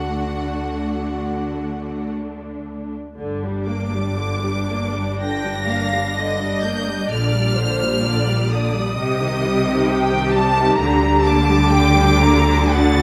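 A slow, melancholic and solemn string orchestra movement in G minor unfolds at 55-68 BPM with a rubato feel, its focused, vibrato-laden violin melody soaring high over a smooth second violin line, up-front violas and distant cellos above a rich double bass foundation, all in a moderate recital hall reverb as the harmony moves from D toward G minor at 3.2 seconds and settles on Gm/D at 10.8 seconds in this cut from a longer piece.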